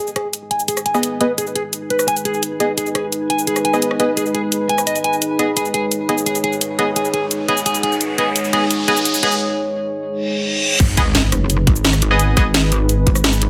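A dark, lo-fi haze of chorused pads and cassette-tinged stabs opens this aggressive, futuristic slice of dark technical drum and bass, cut from a longer piece and set in a moderate plate reverb. Two deep, moody ambient pads hold sustained chords and texture, pumping against the sidechain beneath an up-front electric guitar at the edge of break-up, whose fingered arpeggios carry a vintage 12-bit sampler crunch, sidechain pumping, delay and a filter sweep before they stop at 9.3 seconds. A nasal, band-passed sawtooth chord stab with tape colour and delay also sweeps through the build-up, while an overdriven drum kit with a cracking snare, bright hats, rim clicks, shaker and crash drives things forward. A riser, a short break and a reverse cymbal lead into the drop at 10.8 seconds, where a tight, overdriven electronic kick lands with an impact and a sub drop. A brief snarl of growling, distorted saw bass gives way to a heavy, pulsing pluck wobble bass that pushes the low end up front through the close.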